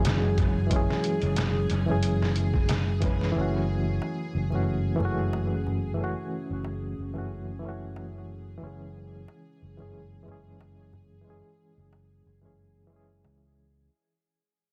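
An echo-heavy mix with little reverb opens this brooding, smoky trip hop fragment, which fades out across its length as a filter sweeps over a punchy, amped fingered electric bass. A reedy electric piano with fast tremolo and tape echo sits up front over a deep, mellow ambient pad, a tense string-like drone with phaser and vibrato, and a very quiet, dry clay-shell darbuka. A gritty, pitched-down sampler-style drum kit with a thumpy kick and studio reverb drops out at 3.3 seconds, while the harmony moves from C#m/F# to F#m7 and back.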